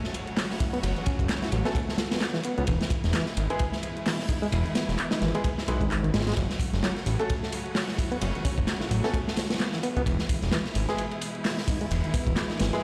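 Heard through a big sound system in a bare stone room, this energetic, swaggering breakbeat cut at 130 BPM in F# minor opens with a very quiet electronic impact as a crunchy, saturated acoustic breakbeat kit with dark cymbals and a tight kick drives alongside dry analog drum-machine handclaps and hi-hat, a fat, detuned sawtooth bass with tube drive and filter sweeps enters at 0.8 seconds, a barky, reedy electric piano riff with fast tremolo and digital delay sits in the background, clear grand piano stabs with audible action noise and delay arrive at 1.7 seconds, and a dark, bowed string section carrying gritty 12-bit sampler texture and sidechain pumping sustains chords moving between F#m and E.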